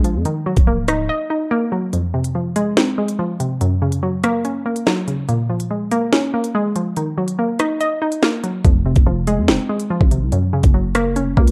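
A hollow, detuned square-wave pluck with chorus and a filter sweep drives this dark, tense half-time drill fragment at 143 BPM in F phrygian, riding over crisp hats, a sharp snare and a knocking kick from an up-front electronic kit, while a growling, buzzy 808-style bass drops out at a break at 1.1 seconds and returns at 8.6 seconds, the kick muted from 1.9 seconds until then, the mix set in moderate spring reverb and cassette-tape grit over an Ebm, Fm, Gb and Bbm7 progression.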